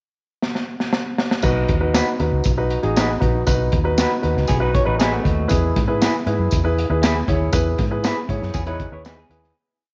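Danceable and upbeat, this short 1960s-style soul piece opens with a fill on a crunchy, saturated breakbeat kit with a punchy kick, high-tuned snare and dark cymbals, before a woody upright piano plays close-voiced rhythmic chords with short fills over a round, foam-muted electric bass line that is syncopated and laced with chromatic approach notes, while a jingly tambourine marks every beat. A twangy, slightly broken-up guitar adds short chops on the backbeat in the background, and from 4.5 seconds a darker, lo-fi, compressed guitar plays short fills in sixths between phrases. The moderate plate reverb gives the room some depth as the music fades out from 7.5 seconds.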